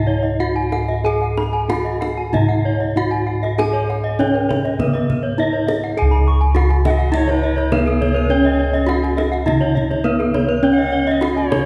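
Balinese gamelan in a brilliant, ceremonial mood, moving at 92-103 BPM in a straight 4/4 in Db slendro, this short excerpt opens with a bronze metallophone carrying the melody while two more metallophones spin bright, ringing arpeggios above it, their paired tuning producing shimmering beats. Mellow, round bossed gongs struck with padded beaters sit up front as the bass, and a tight kendang joins at 0.7 seconds. At 6.9 seconds a breathy alto recorder enters with a second line marked by vibrato and a woody chiff, the whole ensemble bathed in a concert hall's lush reverberation.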